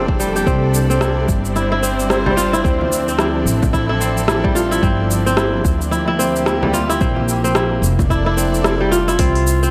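Bright, ringing kora arpeggios with tape echo open this earthy organic downtempo excerpt at 110 BPM in C mixolydian alongside smooth bowed string chords and a woody pizzicato upright bass, the strings and bass both pumping with sidechain, while a deep electronic kick and a deep house kit of metallic hats, rim click and shaker, both overdriven, carry a swung groove; a large frame drum sits in the background from 2.3 s, the kick drops out at 8.6 s, and a mellow, distant clarinet appears in the final half second, all within a dry, gritty sound touched by light small-room reverb.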